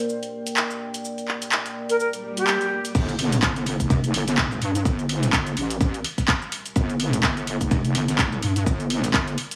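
Swaggering and bouncy, this swung bass house excerpt opens on a moody, phaser-washed analog pad with sampler grit and a house kit of handclaps, shaker, hi-hat and crash; a breathy silver flute line with tape echo slips in at 1.9 s, and a faint swell and impact usher in the drop at 2.9 s, where a heavy, saturated wobble bass and a punchy electronic kick arrive at 3.0 s alongside a very quiet, gritty sampler-style soul kit of ride and snare.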